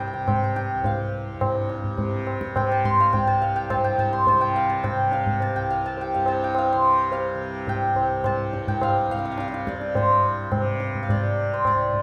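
The hammered santur leads this short Hindustani classical passage, its bright, ringing tone sitting up front as it carries the melody in raga Durga on C, moving between C5 and C6. Beneath it, a softly plucked tanpura holds a buzzing, warm drone low in the range, quieter than the other parts and sounding from the opening moment. The low-tuned tabla joins at 0.3 seconds, its resonant strokes placed close and present with a live-room character. The mood is meditative yet radiant, set at 106 BPM in a straight 4/4, and the whole piece is heard through a moderate recital-hall reverb. The opening section runs until 9.9 seconds, when a new section begins and continues to the end of this 12-second cut from a longer performance.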